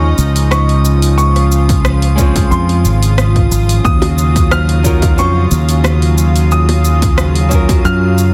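Sunset chillout in Eb dorian at 90 BPM, with a light swing on the sixteenths and a wistful, smooth mood, this short excerpt is cut from a longer piece. A clear, intimate grand piano carries the melody high in its register, its action noise audible and its notes trailed by tape echo, while a small, fingerpicked nylon-string guitar accompanies beneath it through the same echo. A lush, detuned unison pad holds thick sustained chords with a soft attack and chorus, moving from Dbmaj9 to Ebm9 at 3.8 seconds, and a glassy texture of drifting overtones sits calmly in the background. Up front, a dark, round fingered electric bass anchors the low end. The overdriven deep house kit of cabasa, hi-hat and rim click enters at 0.2 seconds in a small room, a punchy layered electronic kick joins at 1.7 seconds, and round, low-tuned bongos come in at 4.0 seconds. The whole is set in light digital reverb and given a dense, heavily limited modern master.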